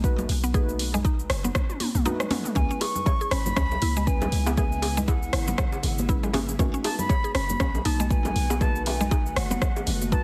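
A pure, mellow silver concert flute with vibrato carries the melody from 2.6 s, trailed by digital delay over a spiritual, earthy afro house groove at 119 BPM with swung 16ths. An up-front deep electronic kick and an overdriven deep house kit of cabasa, hi-hat, rim click and toms drive the beat, with a drum fill at 1.6 s. Bright congas sit in the background and tight, high-tuned bongos join alongside the flute, while a boomy 808-style bass with tube saturation pumps beneath. Woody, round mallet-like synth plucks play arpeggios and dark, detuned chord stabs pump with chorus and delay through B7 and C#m7. A very quiet, ethereal pad with a slow attack enters at 3.8 s, and the mix carries a heavily compressed radio sound with light reverb.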